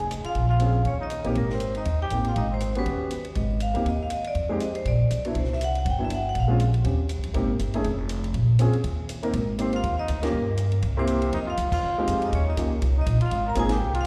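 Swinging and warm, this fast small-group swing and bop excerpt is cut from a longer piece and captured as a live gig heard through the venue's PA, with recital hall reverb. A vibraphone struck with medium hard mallets carries the melody, its tone metallic, ringing and full, with the motor off, close-miked and dry apart from a slapback echo. A dark, breathy trumpet with light vibrato adds a second line beneath it, also with slapback echo. The trumpet drops out after about three seconds and the vibraphone at 6.6 seconds, and both return together at 9.6 seconds. A woody, thumpy upright bass with gut strings sits up front, plucked throughout, while a grand piano enters at 0.6 seconds to comp with slapback echo. A compact cocktail drum kit with dark cymbals, a high-tuned snare and a tight kick keeps time in the background, and the band hits several accents in the closing bars.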